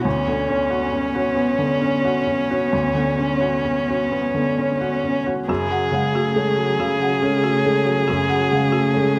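Reflective and longing, this brief neoclassical fragment in F# minor drifts in a rubato 6/8 at 43-47 BPM, with a warm violin melody sung with vibrato over a felt-muted upright piano whose mellow, intimate tone and audible action noise sit up front beside an airy, sul tasto cello second line, while from 5.5 s a dark viola with expressive portamento and woody, rustic marimba arpeggios join in the background, all in a moderate scoring stage reverb as the harmony moves from Bmadd9/D to F#madd9.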